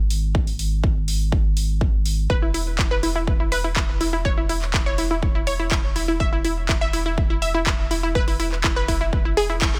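A saturated sub bass opens this bittersweet, driving progressive house excerpt at 123 BPM, deep and thick with sidechain pumping, joined at once by an overdriven house kit of handclaps and bright hi-hats and a punchy, up-front electronic kick with small room ambience, before a lush, detuned unison pluck enters at 2.3 seconds with arpeggios carrying 12-bit sampler grit, a filter sweep and dub echo, all leading to a band accent at 9.6 seconds in a dry mix.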